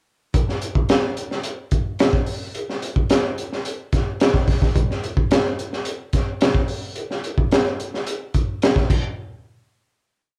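A straight, syncopated funk groove in 4/4 opens this short, complete piece, sly and funky in mood. A single breakbeat drum kit carries it from 0.3 seconds to 9.0 seconds, working kick drum, snare drum, hi-hat and crash cymbal through a pattern laced with ghost notes. The kit sounds crunchy and saturated, with a gritty edge, a high-tuned snare, a tight kick and dark cymbals under a rolled-off top. It sits up front in a studio room, captured like a band playing live together, with a wet reverb tail of 0.6 seconds around it. After the groove finishes, a final hit rings from 9.2 seconds to close the piece.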